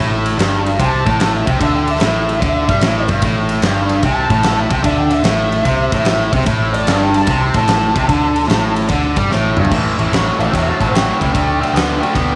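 Gritty and brooding, this swung blues rock and southern rock excerpt opens on a dark, wah-soaked lead guitar solo over a bright, double-tracked rhythm guitar riff that sits up front, while a round, foam-muted fingered bass holds the low end. A big rock kit with a fat snare, punchy kick, crash, ride and toms, roughened by vintage sampler grit, comes in at 0.3 seconds and plays a fill from 9.3 seconds into the next section at 9.7 seconds, where the harmony moves off A minor. The sound sits in a moderate echo chamber blended with a small room.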